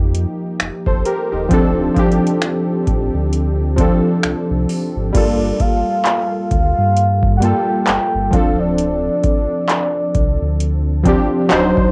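A booming analog drum machine sits up front, its deep kick, metallic hi-hat, finger snaps, handclaps and crash cymbal overdriven and tape-saturated, driving this moody, sensual contemporary R&B excerpt in G minor at a slow 66 BPM with a swung 16th-note feel. Detuned, chorused analog keys with a round sawtooth-and-square tone and a filter sweep play chords moving from F9sus4 through Dm7 and Gm9, over a mellow sine sub bass doubled at the octave. At 5.2 seconds a soft, dark octave-layered synth lead enters high with chorus, tremolo and vibrato, all captured as a home cassette recording with light reverb.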